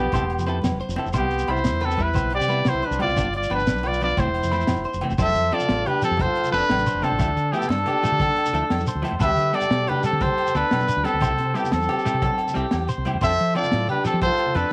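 Lightly reverberant with a faint mains hum beneath it, this joyful, carefree highlife guitar band excerpt rolls along at 119 BPM in a straight 12/8. Up front, a clear, punchy trumpet with a vintage pop tone carries the melody with scooped notes, while a darker, smooth-topped trumpet in a jazz style adds a second line beneath it, colored by vibrato. Two picked, compressed electric guitars fill out the band: a clean one with a scooped tone plays the accompaniment, and a twangy guitar at the edge of break-up spins higher arpeggios. A round, punchy fingered electric bass anchors the bottom, and the drum kit brings a saturated, gritty breakbeat with a high-tuned snare, tight kick, dark cymbals and a rolled-off top. Ringing agogo bells and soft-handed congas heard from a distant, large room sit in the background, joined by a grainy, mellow shekere, as the harmony moves from Fmaj7 and G7 into a passage at 5.2 seconds built on F6, Dmadd9 and C.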